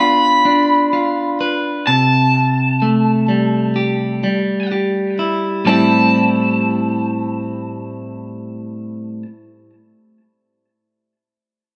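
A clean electric guitar and a dark, overdriven lead guitar through a small cranked amp open together in this slow, brooding rock passage in A minor at 63 BPM, cut from a longer piece. The up-front clean guitar picks arpeggios bathed in spring reverb and tape echo, while the lead plays a picked melody with tape echo of its own, over chords moving from Bdim to Am7/C and settling on Am7 at 5.7 seconds. A moderate concert-hall reverb lends a spacious, cathartic air before both guitars stop by 9.3 seconds.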